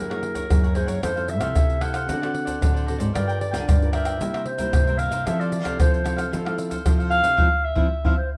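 Joyful and festive, this short cut from a longer samba and choro piece features a dark, roomy clarinet singing the solo melody up front over crisp picked cavaquinho, two warm thumb-plucked nylon-string guitars covering accompaniment and bass, and a close, dry percussion section of tube shaker, pandeiro, tamborim and tight surdo, all in light reverb as the chords move from Gb9 through Fmaj7, D7, Gm7 and C7 before a band accent at 7.4 seconds.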